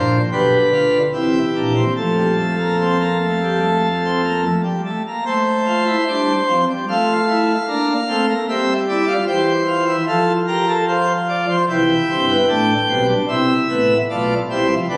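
A full pipe organ in plenum registration carries this baroque-style four-part fugue alone, its mixtures giving a brilliant, up-front sound with a romantic voicing that spans from G1 up to G5. The mood is serious and driving, moving at 74 BPM in straight 4/4 in F major. The harmony passes through B diminished and C7 to settle on F early on, then later moves through C over G, back to F and on to C. A new section begins at 5.3 seconds and runs to the close of this 15-second passage, which is cut from a longer piece. The organ sits in a concert hall with a two-second reverb tail, captured on a phone in the room, and studio reverb adds further depth to the resonant space.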